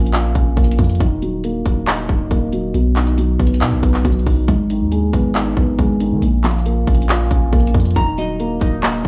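A dry, gritty hardware recording with little reverb opens this menacing, hard-hitting trap excerpt, cut from a longer piece and set in Eb minor at 138 BPM with a half-time feel in 4/4. Up front from the start, a felt-muted upright piano plays accompaniment in a soft, boxy, intimate tone, its dark, thick-felt sound shaped by a low-pass filter. A filter sweep unfolds from 0.0 to 8.0 seconds. Beneath the piano, a long sustained 808-style bass supplies deep, sine-like notes with a fast attack and a mellow decay. The electronic trap drum kit enters at 0.1 seconds with a hard-clipped kick, metallic hi-hats and handclaps, re-recorded in a large room and placed prominently in the mix. The chords move from Bbm through Ebm, B and Abm back to Bbm, and at 8.0 seconds, as the harmony lands on Ebm, a clean, fingered semi-hollow electric guitar arrives with hollow-body arpeggios, colored by lush chorus, analog delay and a low-pass filter.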